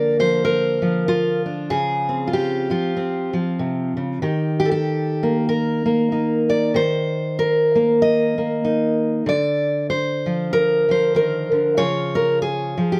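A lightly swung eighth-note feel in 4/4 at 95 BPM carries this hopeful, warm folk piece for solo fingerpicked steel-string acoustic guitar, cut from a longer work and lasting 13.0 seconds. The dreadnought sounds full-bodied and up front, with the warm tone of fresh strings, as it moves from Bb/D through Dbmaj7 and a long stretch on Eb before returning to Bb/D and settling on Db. A moderate small-room reverb gives the playing a close, intimate setting.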